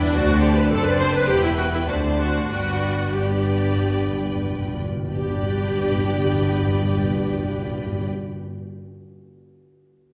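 A rubato pulse in four gently slows through the first 5.1 seconds of this quick, spirited and graceful classical-period movement for symphony orchestra, cut from a longer piece. A bowed violin section carries the expressive melody, set back in the mix, while a second violin section traces a focused, smooth-topped line beneath it. The viola section sits up front and close, its lush, vibrato-rich accompaniment filling the middle, as a French horn section holds sustained chords with a vintage glow and light vibrato. The cello and double bass sections anchor the bass, the basses sounding smooth and even, and timpani with soft mallets enter at 0.2 seconds with a round, dry tone, playing a fill from 2.5 to 5.1 seconds as the harmony moves from D7 through Em and back to D7 before settling on G. A recital-hall reverb lends the ensemble a spacious, resonant bloom as the music passes into a new section at 5.1 seconds.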